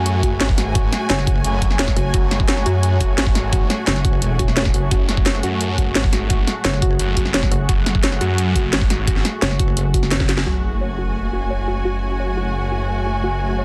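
A dense, heavily limited mix with light reverb carries this tense, aggressive excerpt of dark technical drum and bass at 173 BPM in F# minor, where a swirling, phased detuned saw bass and a metallic, distorted wobble bass sit up front over a knocking electronic kick and a kit with cracking snare and bright hats, while a soft, round pluck arpeggio with digital delay, a veiled con sordino string section and a deep, moody ambient pad in the background all pump under sidechain, until the drums drop out at 10.4 seconds and an electronic sub drop lands at 10.5 seconds as a filter sweep moves over the pluck.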